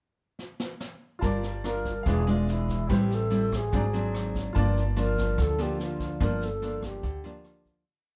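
Intimate and smooth, this short bossa nova piece in a straight 4/4 feel opens with a pickup bar where a vintage brush drum kit, distant and roomy with a tight kick, rim click and medium-tuned snare, plays a fill from 0.4 seconds. At 1.2 seconds the band settles in: an up-front nylon-string guitar, fingerpicked on old strings with a woody tone, plays thumb bass under syncopated plucked chords. Beside it, a growly pizzicato upright bass on steel strings holds a two-feel of roots and fifths, while a grainy tube shaker sits in the background. A bright baby grand piano adds brilliant held chords in rootless voicings with short sustain. From 1.7 seconds a mellow wooden-headed alto flute, pure and distant with vibrato and a soft attack, sings hook-like motif phrases over a progression moving from Gm7 through E7b9, Am7 and Ab7#11 back to Gm7. The dark production carries light reverb, and the piece fades out from 6.2 seconds.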